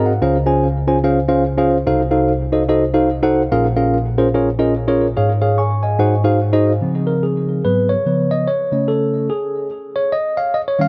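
A tine electric piano opens with a fill at 0.0 seconds, its clean tone coming through its built-in speakers and sitting up front with a touch of tape echo. This is a reverent, hopeful gospel passage in Db major at 145 BPM in 4/4, with a 60% swing on the eighth notes. The keyboard carries the whole passage alone, ranging from Bb1 up to Db6 over rich harmony that moves from Dbmaj7 through F7b9/C, Bbm7 and Ab7. At 6.8 seconds a new section begins and the piano takes a solo, passing through Abm7, Db9 and Amaj7/C# before the passage ends at 10.9 seconds. Light reverb and a dark, warm production give this short cut from a longer piece a warm glow.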